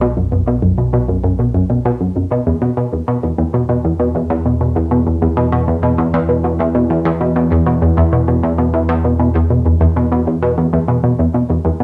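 A tight, detuned sawtooth synth riff sits up front from the first moment, its filter-plucked notes carrying chorus and delay over a fat analog bass whose sawtooth tone is thickened by transformer saturation and a filter sweep. This mysterious, expansive slice of sequencer-driven space music moves at 98 BPM in a straight 4/4, shifting from B5 to E5 at 2.5 seconds. A wet studio reverb and a home cassette recording frame the short fragment, which is cut from a longer piece.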